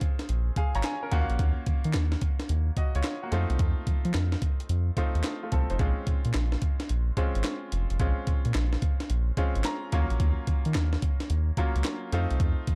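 A bright, polished grand piano and a gritty, compressed breakbeat kit with thumpy kick, handclaps, hi-hat and a medium-tuned snare open this punchy, slick new jack swing groove in Bb minor at 109 BPM with a 16th-note swing, joined at 0.3 seconds by a round, deep analog bass up front, while the piano adds short fills over a Bbm7, Ebm7 and F7 progression in a dry, dark production.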